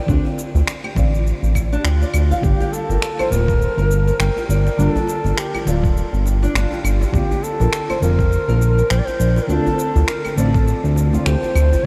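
Hypnotic and warm, this swung organic downtempo excerpt in G minor at 102 BPM sets fingerpicked flamenco guitar arpeggios and a dark, detuned chord stab with chorus, phaser, sidechain pumping and analog delay over an up-front, tube-saturated sawtooth synth bass, a gritty, thumpy electronic kick, overdriven electronic cabasa, finger snaps and claves, and a distant djembe with metal rattles, while an airy, reedy bass bansuri with vibrato and analog delay enters at 1.8 s to carry the melody through a Dm7, Gm7, Bbadd9 progression in a dreamy mix soaked in huge ambient reverb.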